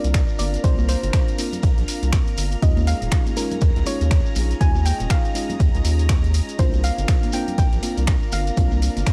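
Moody and warm, this deep house excerpt moves at 121 BPM in 4/4 with a swung sixteenth-note feel, cut from a longer piece. A punchy, tape-toned electronic kick sits up front from 0.1 seconds alongside a deep, round analog bass with transformer saturation and sidechain pumping, while an overdriven deep house kit of finger snaps, hi-hat and ride is layered with a very quiet, gritty breakbeat sampler-style kit of hi-hat, ride and snare. Bright congas played with hard hands arrive at 0.4 seconds, and grainy, band-limited maracas add texture in the background. The harmony moves from C9sus4 to Eb9sus4 at 2.6 seconds and back to C9sus4 at 6.6 seconds, carried by a breathy, detuned pad and mellow, warbling FM electric piano stabs, both chorused and pumping. Above them a soft, gentle pluck carries the melody through chorus and tape echo, while a silky string machine holds a high Bb in the background with ensemble chorus. 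The whole recording sounds dry and gritty, with a hardware, cassette-tape character and little reverb.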